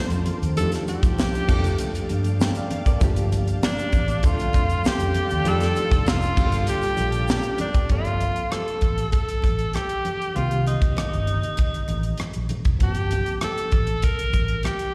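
A bright, forceful tenor saxophone with slapback echo carries the melody over a barky, lightly overdriven electric piano with fast tremolo and a shimmering, detuned ambient pad, opening this smooth, cinematic 1970s-style soul excerpt in G minor at 98 BPM. A round, foam-muted electric bass, a tight, polished funk drum kit with a high-tuned snare, low-tuned congas and a very quiet grainy tube shaker join in, with a mellow horn section stabbing at 5.5 seconds before the pad and shaker stop at 7.9 seconds, all heard as a live gig through the venue's PA with recital hall reverb.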